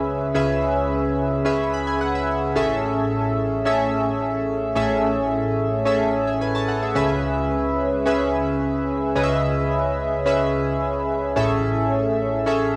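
A short, wet booth ambience and the grain of a home cassette recording frame this dramatic, urgent pop excerpt in C# minor, moving at 109 BPM in a straight 4/4. A single chorused retro synth keys part carries the whole 12.8 seconds alone, sitting bright and up front across a span from A1 to B5. Its glossy pulse-wave and sawtooth voice, shaded by pulse-width modulation, a noise layer and a filter sweep, strikes with a fast attack and then decays into airy tape echo. A quick fill from 1.5 to 2.6 seconds leads into the change to Amaj7, and the harmony alternates between C#m7 and Amaj7, arriving on Amaj7 again at 11.4 seconds.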